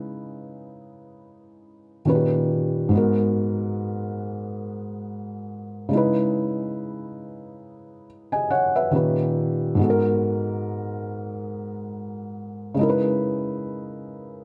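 A dark mix with a moderate plate reverb frames this sensual, moody R&B passage at 70 BPM in G# minor, where a solo felt-muted upright piano, mellow and intimate with a thick-felt tone placed up front, spans G#2 to G#5 over a lightly swung 16th-note feel, moving through C#m7, D#7b13 and G#m7 across its 14.4 seconds.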